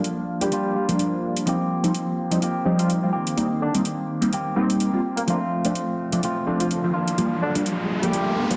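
Nostalgic and groovy, this filtered disco house excerpt in G minor moves at 126 BPM with a swung 16th feel: a bright, clean electric guitar riff with harmonic tremolo and metallic electronic hi-hats run from the start beside a very quiet tambourine, a loose, jazz-style horn section with light vibrato and delay carries the melody from 0.4 s over a punchy, detuned sawtooth polysynth comp with chorus and phaser up front, a filter sweep spans the whole passage, an electronic riser enters at 6.1 s, and the mix sits in a wet echo-chamber reverb under a dense, heavily limited master.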